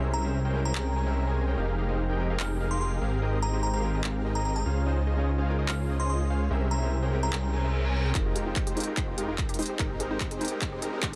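Half-time future bass at 146 BPM in F minor, emotional and dreamy, where huge detuned supersaw chords with sidechain pumping, low-pass filtering and dub echo carry the riff over a thick, saturated, up-front detuned saw bass with chorus, while a glassy FM synth bell sings the melody until 7.8 seconds over a brilliant grand piano in the background, crisp-hatted dubstep drums with handclaps enter at 0.8 seconds, and as a very quiet reverse cymbal and riser rise in from 7.5 seconds, a punchy electronic kick and a wave-folded unison pluck arpeggio join at 8.2 seconds for a filter-swept build-up with a drum fill, all in a dense, heavily limited, nearly reverb-free mix cut from a longer piece.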